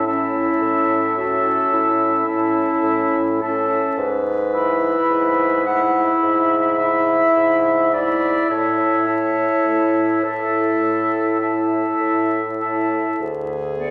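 A rubato 4/4 pulse at 53 BPM carries this serene, lyrical slow romantic movement for wind quintet in A major, cut from a longer piece, as a pure, straight-toned concert flute sings the tongued melody above an up-front oboe second line with light vibrato, a present, mellow clarinet and a distant, roomy French horn in the accompaniment, and a warm bassoon bass, the harmony moving from A through E/G# to Bm/D at 13.2 seconds inside a wet recital hall, with vinyl crackle.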